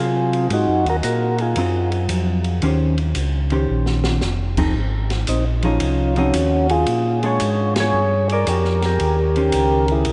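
A swinging 4/4 groove drives this soulful soul jazz organ trio excerpt, where a percussive tonewheel organ with key click and slow rotary speaker states the melody in two phrases, the second from 5.3 seconds, over a lightly overdriven, round organ bass line with chorus vibrato, dark picked comping from a compressed hollow-body guitar, and an open acoustic kit with a boomy kick and high-tuned snare that enters at 0.3 seconds, fills at 3.7 seconds and hits a band accent with the group, all bathed in a vast cathedral reverb.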